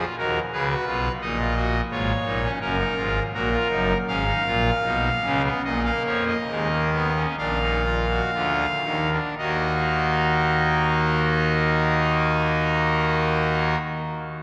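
A long, wet cathedral reverb surrounds this brief extract of a baroque-style three-part fugue in Eb minor, played solo on a pipe organ whose brassy trumpet stop sits up front with a bright, romantic voicing. The mood is contemplative yet driving, moving in 4/4 at 55 to 87 BPM, with the pace slowing from 1.2 to 9.4 seconds as the harmony passes through Gb and Bbsus4 to Bb. At 9.4 seconds it settles on Ebm and opens a new section.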